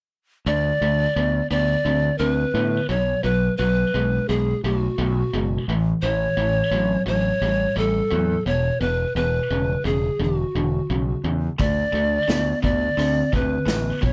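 Classic rock with a swaggering, sunny mood, this cut from a longer piece moves at 86 BPM in a straight 4/4 over a D5, B5, A, E5 and back to D5 progression. From 0.5 seconds an up-front pan flute carries the melody with an airy, chiffy attack, lifted highs, vibrato and a slapback echo. Beneath it a bright, picked overdriven electric guitar plays the riff, while a growling fingered bass, overdriven and placed up front, holds down the low end. At 11.6 seconds a vintage acoustic drum kit arrives with hi-hat, a medium-tuned snare and a punchy kick, its rolled-off top and pumping small-room sound giving it a period character. A second crunchy overdriven guitar joins the riff at the same moment, sitting very quietly in the mix. The whole recording is dry, with little reverb, and all parts play on to 14.1 seconds.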